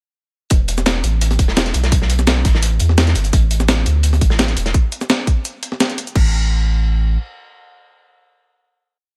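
Melancholic and soulful, this short liquid drum and bass piece drops in at 0.5 seconds with a tight, layered electronic kick and a compressed, pitched-up, gritty sampler-style breakbeat kit of snare, closed hi-hat, shaker and crash, both up front in a rolling two-step groove. Beneath them a deep, round sine sub bass holds long gliding notes, while a crunchy acoustic breakbeat loop with edits, dark, saturated and rolled off at the top, adds texture until 4.7 seconds. The drums stop at 6.2 seconds, leaving the sub bass to carry the final note inside a small room ambience.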